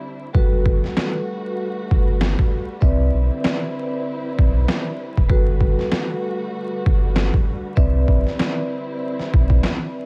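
Vinyl crackle and a small-room ambience frame this nostalgic yet confident boom-bap hip-hop excerpt, which opens with a dark, woody string section bowing lush sustained chords alone before the other parts arrive at 0.3 seconds. An up-front, overdriven sampler-style drum kit with a thumpy, pitched-down kick, a medium-tuned snare and 12-bit grit swings over a deep, sine-toned sub bass that sits in the background. A mellow, airy vibraphone struck with soft mallets rings through cassette-tape coloring and slow motor vibrato, tracing the Gmaj9 to Cmaj9 changes.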